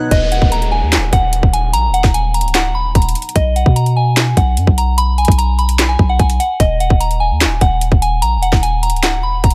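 A half-time trap groove in 4/4 drives this brooding, dark hip hop excerpt, with a hard-clipped kick, sharp snare, metallic hi-hats and handclaps up front alongside a deep, boomy 808-style sine bass, while a soft, pure FM synth bell with chorus carries a mellow melody and an electronic downlifter plays quietly underneath until 3.4 seconds, as the chords move from Ebm to B5 and return to Ebm at 6.6 seconds.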